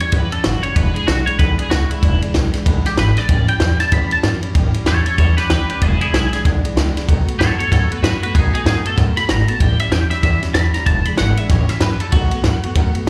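A rowdy, upbeat rockabilly excerpt opens with a bright, clean and twangy electric guitar solo in E mixolydian at 190 BPM with a swung feel. The guitar is compressed and picked, carrying analog chorus, slapback echo and digital delay, and it drops out at 12.7 seconds. Underneath, a woody, thumpy upright bass, a full-bodied jumbo steel-string acoustic guitar with audible finger squeak, and a dry, up-front cocktail kit with dark cymbals, a high-tuned snare and a tight kick move through A7, E7 and B7 chords, all captured as a live club gig through the PA.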